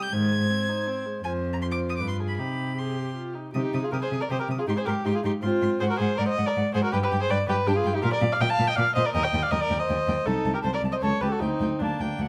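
Restless and stormy, this quick classical-period movement for string quartet drives along at 160 BPM in 3/4, set in C minor before turning toward G minor at 8.0 s. The first violin carries the melody high above the group with a rich, lightly vibrated gut-string tone, while the second violin spins a darker, nasal second line capped by a smooth top. Beneath them the viola supplies close, up-front accompaniment with an airy bow, and the cello anchors the bass with a rich, reedy period-style sound, entering at 0.1 s. The harmony moves restlessly through chords such as Ab9 and G(b9) before settling on Bb5 and Eb, then slipping through A/C# to Gm/D as the passage closes at 12.3 s. A moderate recital hall reverb surrounds the quartet, and the music is cut from a longer piece.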